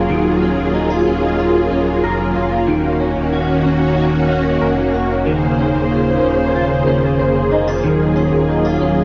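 Dream pop in Eb dorian at 93 BPM in a straight 4/4, this haunting, melancholic 9-second excerpt is cut from a longer piece. A string machine voicing violas holds sustained chords throughout, its vintage sawtooth tone soft in attack yet brilliant and up front, thickened by ensemble chorus and cassette tape coloring. A clean electric guitar plays arpeggios alongside it, picked and compressed with a twangy, scooped character, also up front and carrying ensemble chorus, cassette tape and tape echo. Beneath them a deep, full sub bass with octave sits on a sine tone with a fast attack and long sustain, staying between Eb1 and F1. The harmony moves from Gbmaj9/Eb to Ebm7 at 2.7 seconds and Bbm9/Eb at 5.3 seconds before returning to Gbmaj9/Eb, all in a short, wet booth ambience that gives the sound the dusky, lo-fi feel of a home cassette recording.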